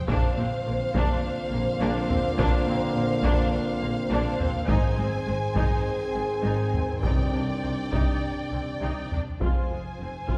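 Two violin sections open this relentless, heroic cinematic orchestral excerpt in C minor at 103 BPM, one lush and focused on the melody and one darker and expressive beneath it, over portamento violas, smooth cellos and distant double basses, while mellow French horns and clear trombones hold chords against heavy-stick, compressed and saturated taiko drums, with a close, dry timpani note at 7.0 seconds and the whole scoring-stage sound heard from further back in a reverberant room.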